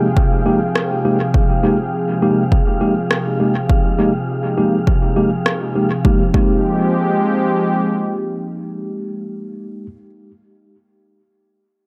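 An echo-heavy mix with light digital ambience frames this meditative, spacious ambient dub excerpt in F minor at 102 BPM, its 16ths lightly swung over a single Fm11 chord. A detuned sawtooth analog pad holds soft-attack chords up front with chorus, while a mellow tine electric piano plays low-pass filtered stabs sent through dub echo, and an airy, breathy wind-like noise texture sustains a single high F until 6.1 s. A punchy, overdriven electronic kick enters at 0.2 s and is joined at 0.8 s by a rim click that carries its own dub echo and a small-room character, and both drums stop before the piano's stabs end at 9.9 s.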